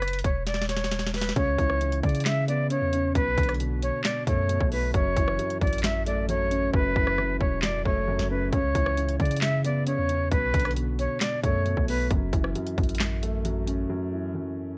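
Hip hop trap at 134 BPM in a half-time 4/4 feel with a melancholic mood, where a breathy, reedy jazz flute with vibrato and a crisp chiff carries the melody up front over a deep, sine-toned 808 bass with long, decaying notes and a trap kit of hard-clipped kick, sharp snare, metallic hats, rim clicks and handclaps, while a dark, boxy grand piano enters at 1.4 s to move through C#m7, Bm7 and F#m7, the hi-hats drop out from 6.7 to 8.5 s, and the flute falls away at 12.1 s into a break, the whole recording carrying small-room ambience and the warbling pitch drift of worn cassette tape.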